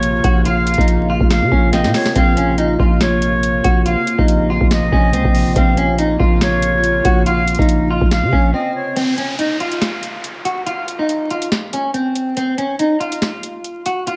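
A half-time feel at 141 BPM in 4/4 anchors this dark, melancholic hip hop and trap excerpt in Bb minor, with a booming analog drum machine of deep kick, tonal snare and metallic hats up front and a growling, buzzy 808-style bass beneath. A clean, picked electric guitar carries the melody through lush chorus, low-pass filtering and analog delay, joined by a reedy, airy flute on a second line and a warbly, lo-fi pad holding a Bbmadd9 chord, set in a dreamy, reverb-soaked mix with vinyl crackle. The bass drops out at 8.5 seconds, and from 9.0 seconds the guitar and drums carry on as an electronic downlifter sounds until 12.4 seconds.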